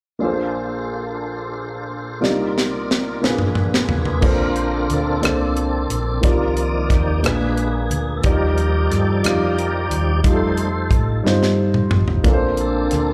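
A slow 6/8 pulse at 60 BPM carries this uplifting, soulful gospel excerpt in Bb major: a woody, slightly detuned upright piano with audible action noise and slapback echo opens beside a full, clean tonewheel organ coloured by chorus vibrato and a slow rotary speaker, and a tight, dry funk drum kit with a high-tuned snare enters on a fill at 2.2 s; at 4.2 s the organ takes a solo as a round, punchy hollow-body electric bass and a very quiet, dark French horn section with light vibrato join, the chords moving from Bbmaj9 through Cm11, Ebmaj9 and F9, and the band is heard live through a club PA with small-room reverb.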